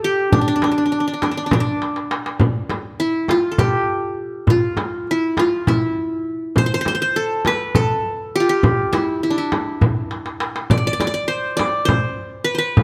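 Set in a straight 7/8 at 202 eighth-note beats per minute, this excerpt from a longer Turkish makam ensemble piece moves with a passionate yet stately bearing, tuned to A4 = 441 Hz. The acoustic qanun carries the melody up front between D4 and D5, its plectrum-plucked triple strings ringing bright-edged. A jazz-style clarinet with vibrato adds a second line in the background for the opening moments only, falling silent at 1.8 s. From 0.3 s a metal-shell darbuka, crisp and vintage-sounding with a band-limited, hard-handed attack, sits up front beside a close, warm frame drum. Brief drum fills mark the turn into a longer second section and recur around 10.1 s, all captured with close, detailed microphones and a light reverb.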